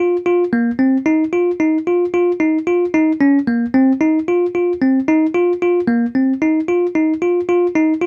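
A bell-like, bright tine electric piano plays alone and up front from 0.0 to 8.1 seconds, moving between Bb3 and F4 in this restless, hypnotic fragment of a longer contemporary instrumental piece, set at 112 BPM in a straight 5/4 and tuned to A4 = 445 Hz, with close, detailed miking and a light touch of reverb.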